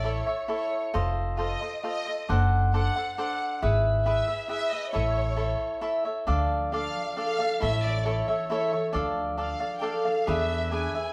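Proud and romantic, this brief mariachi-style Mexican folk fragment in D harmonic minor moves at 135 BPM in a straight 3/4, with a dark, lush violin section singing the expressive vibrato melody from a distance, a crisp, mellow picked cavaquinho and a woody pizzicato upright bass sitting up front, and a ringing fingerpicked concert harp joining with arpeggios at 6.3 seconds, all played live together in a large studio with moderate reverb.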